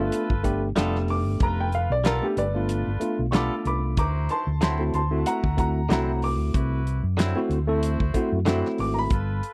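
Soulful and laid-back, this straight-eighth soul blues excerpt moves at 94 BPM in 4/4 with a light sixteenth-note swing, over G9 and D9 chords. A woody, slightly detuned upright piano carries the solo line from 1.1 s, above a worn, slightly out-of-tune tine electric piano, sustained vintage horn chords and a round, amped fingered bass. A damped 70s kit with a fat snare, tight kick and hi-hat sits up front, and a bright, twangy clean guitar adds compressed stabs with spring reverb, all in a dry, close 1970s-style studio sound.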